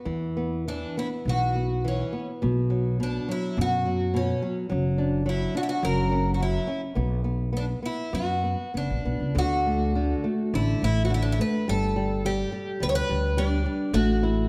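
Mournful and longing, this excerpt from a fado-style ballad in 4/4 drifts with a rubato feel at roughly 96-108 BPM, set in B harmonic minor before turning to D major at 9.4 s, with tuning pitched to A4 = 435 Hz. A dark, fingerpicked flamenco guitar opens the piece at 0.0 s as accompaniment, joined almost at once by a woody, growly pizzicato upright bass on steel strings. At 0.7 s a picked twelve-string acoustic guitar carries the melody, its boxy archtop tone shimmering with octave doubling. All three parts sit up front, and the harmony moves through chords such as Esus2, Dadd9/F# and Bm before the shift brings D, Gsus2 and a closing A5. A moderate scoring stage reverb lends the sound a spacious, lingering tail.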